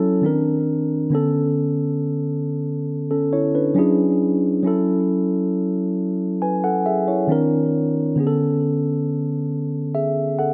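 R&B fragment, longing and moody, in which a mellow, clean tine electric piano plays alone and up front for the full 10.5 seconds, moving through Cm9, Bm9, E13 and A6 before returning to Cm9 and Bm9, set in a light reverb with a digital ambience.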